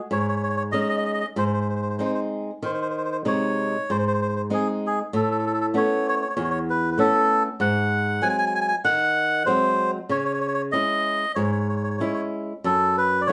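Romantic and wistful, this short Italian folk serenade in C# minor moves at a gently swung 96 BPM, with a reedy, breathy melodica singing the melody up front over a bright, fingerpicked flamenco guitar with fresh strings, both heard together in a wet, live-sounding studio room with a soft top end as the chords settle from G#7 onto C#m at 10.1 seconds.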